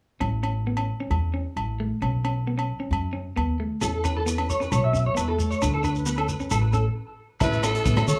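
This is a carefree, danceable highlife guitar band excerpt in A major at 133 BPM in a straight 4/4, cut from a longer piece. From the start, a bright, twangy clean electric guitar plays accompaniment over a woody, growly upright bass played pizzicato and up front, with ringing agogo bells close and dry. At 3.8 seconds a slightly broken-up electric guitar joins with picked arpeggios coloured by ensemble chorus and tape echo, alongside a grainy shekere. The chords move from A to B, Esus4 and D5, then a brief stop clears the way for a return to A at 7.4 seconds. There a raspy, forceful alto saxophone takes the melody, with a very quiet, reedy tonewheel organ holding chords through a rotary speaker and a vintage drum kit with a punchy kick and a rolled-off top playing hi-hat, kick and rim click, while thick-skinned, high-tuned congas slip in just at the close. Light studio reverb adds a touch of space.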